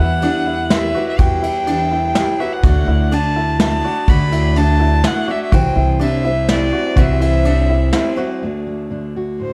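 Indie folk in 3/4 at 124 BPM, warm and hopeful, cut from a longer piece, with a smooth, lightly vibratoed fiddle carrying the melody over a bright, picked jumbo acoustic guitar, woody upright piano arpeggios, a growly, thumpy pizzicato upright bass up front and a distant, roomy brush kit of kick, snare and ride with a rolled-off top. The harmony moves from Em through D to C in D mixolydian, and at 8.4 s the picked guitar and piano stop as a dark, full-bodied fingerpicked dreadnought, finger squeaks audible, takes over beneath the fiddle until 9.5 s. The production is dark and dry, with little reverb.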